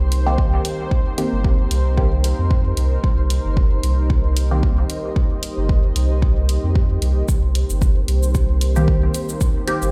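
Heard through a big sound system in a bare, cavernous room with a large studio reverb, this deep, dark dub techno piece moves at 113 BPM in C minor with a light swing, holding on a Cm7 chord throughout. A deep, up-front electronic kick drum enters at 0.4 seconds over a round sine sub bass and shadowy hi-hat and shaker, while a moody, full-bodied sawtooth analog pad with chorus sustains the chord, and both pad and bass pump against the kick. A muted, detuned chord stab with a filter pluck, moving notch, phaser and dub echo sounds until 5.4 seconds and returns at 8.8 seconds, and a grainy, flickering granular texture shimmers faintly in the background.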